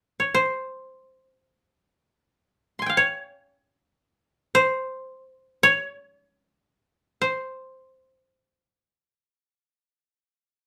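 Austere and calm, this short excerpt of Japanese traditional chamber music unfolds in free time, drawn from a longer piece. A solo koto carries everything, playing from 0.2 to 10.7 seconds in the miyako bushi mode on C, within a range from C5 to C6. Plucked with fingerpicks, the instrument sounds woody and dry, sitting up front in the mix. A moderate studio reverb gives the room a brief, contained ambience. The result is spare and unhurried.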